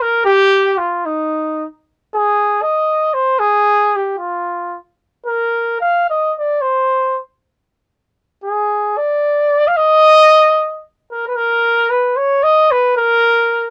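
A mellow solo trumpet carries this short fragment of Mexican folk music from start to finish, playing in a classical style with a light vibrato. The mood is both festive and romantic, set in a 6/8 metre that moves freely in a rubato feel. The trumpet sits up front yet carries a distant, roomy quality, while the overall recording has the dry, close character of a 1970s studio. The opening phrase runs to 11.4 seconds, when the line turns to a new passage that carries the fragment to its end at 13.7 seconds. The trumpet spans a moderate range from Eb4 to F5, giving the tune a tender, singing voice.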